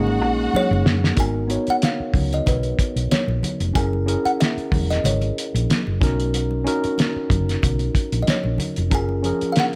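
Silky and bittersweet, this lush 1970s-style soul excerpt in G# minor at 93 BPM with a light 16th-note swing sets a woody, thumbnail-plucked kalimba melody over a worn, slightly out-of-tune tine electric piano, a round, punchy hollow-body bass and a muffled, gritty cloth-damped drum kit that arrives at 0.9 seconds while an opening drum fill runs to 1.2 seconds, with very quiet ringing congas beneath, while a vibrato-rich violin section and a barely audible, distant string section with portamento color only the first second before the chords move from G#m7 through F#7 and Bmaj7 to F#maj9 in a small, intimate room.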